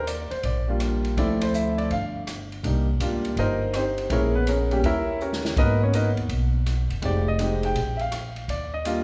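Jazz piano trio in Eb major at 164 BPM with a swung 4/4 feel, relaxed and warm, cut from a longer piece. A clear concert grand piano carries the melody up front with deep bass and long sustain, over a woody pizzicato upright bass and an airy, polished drum kit of hi-hat, kick, ride, rim click and snare with dark cymbals and a boomy kick, which enters at 0.1 seconds and plays a fill from 5.2 to 5.6 seconds. The harmony moves through rich extended chords such as Ebmaj9, Eb7b9 and Abm9, with a brief chordless break, all set in the generous reverb of a recital hall.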